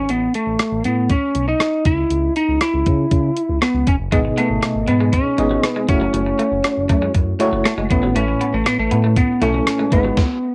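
Dramatic and nostalgic, this 1980s-style pop excerpt moves at 119 BPM in a straight 4/4, captured as a home recording on cassette in a moderate studio room. A lightly driven lead guitar carries the melody from the start, its bright, slightly broken-up, twangy tone sitting up front, while a smooth synth bass glides underneath with dark, detuned sawtooth and triangle layers, vibrato and portamento. A gated 80s digital drum machine drives the groove with hi-hat, rim click, a thumpy kick and a gated-reverb snare, sounding electronic and sampler-like. At 4.1 seconds an FM electric piano with tremolo joins in with a mellow, decaying accompaniment edged by a noise layer, alongside a clean, picked semi-hollow electric guitar playing a quiet riff with subtle chorus. The harmony moves through Asus2, C#m, G#m, F#m7 and Aadd9, and the band cuts to a stop at 10.2 seconds.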